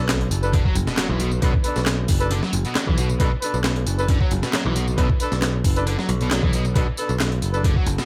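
Energetic and funky, this short breakbeat cut opens with a sub drop impact under a gritty, compressed sampler-style kit with a thumpy kick and high-tuned snare, joined by layered electronic handclaps and tambourine, all soaked in tape echo over a growly, up-front picked electric bass. A double-tracked fuzz guitar riff enters at 0.5 seconds with tube-saturated distortion, while a mellow jazz-style horn section with light vibrato punches in stabs carrying 12-bit sampler grit. The echo-heavy mix sits on a single Bm7 chord, with light reverb and a faint mains hum beneath.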